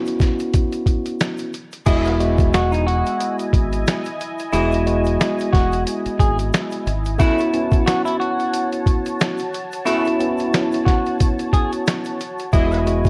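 Boom-bap hip-hop at 90 BPM in E major with a swung 16th-note feel, this confident, soulful excerpt opens with a mellow tine electric piano, gritty pitched-down sampler drums with a thumpy kick and a bright, very quiet egg shaker, before a dark semi-hollow guitar melody with slapback echo, punchy horn stabs, a smooth chorused sawtooth pad and a round, up-front dub bass all enter at 1.9 seconds, the whole recording coloured by light reverb and a worn cassette-tape pitch warble.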